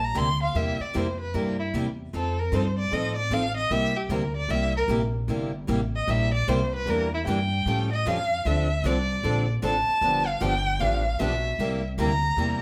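Recorded live in one large studio room with moderate reverb, this lively, swinging jazz manouche passage moves at 152 BPM in C mixolydian, tuned to A4 = 436 Hz. An expressive bowed violin solos on the melody throughout, full of vibrato and portamento, over a woody, thumpy pizzicato upright bass on gut strings sitting up front. From 0.1 s, two picked steel-string acoustic guitars accompany, both bright with fresh strings: one a boxy parlour instrument, the other a concert guitar with audible finger squeak. They move through changes from C7 and F7 to Em7b5, Aaug7, Dm7 and G7.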